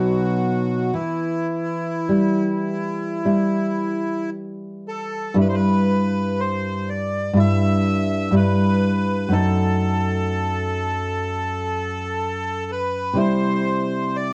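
Elegiac and yearning, this fragment of a longer romantic duo unfolds with a free, rubato feel, as a reedy, bright bandoneon carries the melody up front over a dark, fingerpicked classical nylon-string guitar whose finger squeaks are audible. A second passage begins at 5.4 seconds, with harmonies moving through diminished colour before settling on C near the end. The whole recording sits in a small, wet room and carries the worn, warbling pitch drift of old cassette tape.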